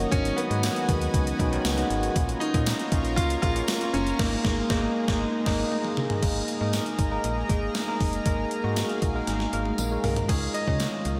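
1980s-style pop with a romantic, nostalgic mood at 118 BPM, this brief section of a longer piece is drenched in a dreamy, reverb-soaked mix, built on an up-front gated drum machine with a thumpy kick and overdriven gated snare, a snappy, metallic FM bass, and a bell-like tine electric piano with analog chorus over a lush, detuned unison pad. A clear, intimate grand piano carries the melody from 0.1 s with audible action noise and diffuse delay, sitting in the background, and drops out before returning at 10.0 s, while a faint, jingly tambourine runs through. Chords move from Abm7 through Bbm to Absus2, with a band accent and electric piano fill leading into the second section at 6.2 s, drum fills, and a closing Dbadd9 at 10.3 s.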